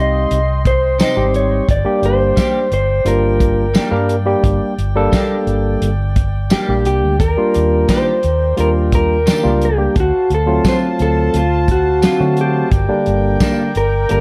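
Set on a straight-eighth 4/4 feel at 87 BPM, this short cut from a longer soul blues piece in G minor moves with a mournful, smoky mood. An electric guitar through a small old amp carries the melody with a slightly broken-up, compressed, lo-fi tone, while a barky tine electric piano, up front through a combo amp, supplies bright accompaniment. Underneath, a vintage foam-muted fingered electric bass sits round and dark, and a soul drum kit recorded in a small room enters at 0.3 seconds with a punchy kick, medium-tuned snare, hi-hat and tambourine. A clean, twangy electric guitar with analog chorus adds picked stabs from 1.0 seconds, and a tight horn section holds sustained chords with vibrato, set further back in the mix. The harmony passes from Cm to Gm, then Ebmaj7 and a tense D7#9 before settling on Gm again, all in a dry sound with little reverb.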